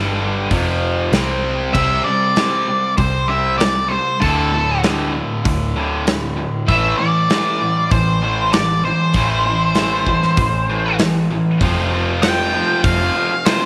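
Lightly reverberant and gritty, this brooding classic rock excerpt runs at 97 BPM in a straight 4/4, with a tight, bright distorted guitar and a raw overdriven garage guitar in the background playing riffs over a dark, round, foam-muted picked bass and a big-room drum kit with a punchy kick. A clean slide lap steel is barely audible in the opening moments before an up-front octave-fuzz lead guitar takes the melody from 1.7 s. At 11.6 s, as the harmony moves to F, a picked steel-string acoustic guitar joins in the background, its finger squeaks audible.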